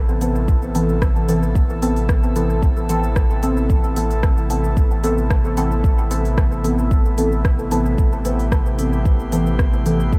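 A clean sine sub bass on A1 opens this hypnotic dub techno excerpt at 112 BPM in A minor. It is joined by an airy, breathy pad, smooth hi-hat, rim click and shaker with dub echo, a warbling, detuned vintage chord stab on Amadd9 colored by chorus, phaser and dub echo, a glassy texture of drifting overtones in the background, and finally an up-front electronic kick that anchors the groove. The bass, stab, pad and texture all pump with the sidechain in a dreamy mix soaked in cathedral reverb.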